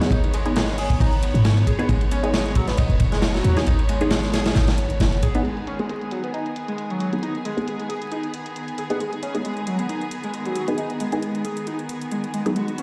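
Swung 16ths at 135 BPM drive this raw, energetic G# minor breakbeat excerpt, where a crunchy, gritty breakbeat kit with a tight kick and a boomy 808-style bass sit up front until about 5.4 seconds, while a tape-warm electronic hi-hat runs throughout, a biting string section holds sidechain-pumped chords, a muted, resonant dub chord stab with phaser and delay carries filter sweeps, and a screaming, guitar-like overdriven synth lead with lush chorus plays its riff, all heard through a large reverberant room with vinyl crackle.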